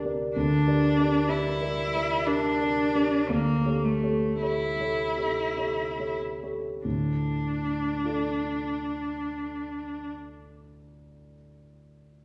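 A recital-hall reverb colors this melancholic, solemn fragment of a romantic classical duo, heard from further back in the room. In D minor and a rubato 3/4 at 45 to 66 BPM, a dark, mellow grand piano accompanies from the start through 12.2 seconds over Gm/D and A7/D harmonies, slowing before settling on D minor at 6.8 seconds. A single bowed cello, rich and focused with vibrato, carries the melody from 0.4 to 10.1 seconds.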